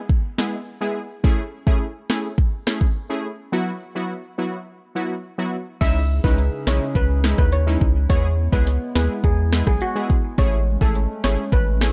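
Sultry and hypnotic, this dancehall cut, taken from a longer piece, moves at 105 BPM in a straight 4/4 in C# minor, with a dark production set in a digital ambience. An electronic afro-pop drum kit sits up front from the start, its deep kick, sharp snare, hats, rim clicks and crash cymbal driving the groove, while a punchy, brassy synth brass stab with a detuned sawtooth edge and chorus joins almost at once over chords moving from E to Amaj7 and then a Bsus4 break at 3.5 seconds. At 5.8 seconds the second section opens on C#madd9, bringing in a round analog bass that is deep, nasal and up front, alongside a bright, metallic steel pan melody struck with hard rubber sticks, close-miked and shimmering through a digital delay. Just after, a hollow, airy, flute-like pad enters with a slow attack and long release, carrying chorus and sidechain pumping beneath the other parts. The harmony returns to Amaj7 near the close as the pan lead and stabs ride over the bass and drums.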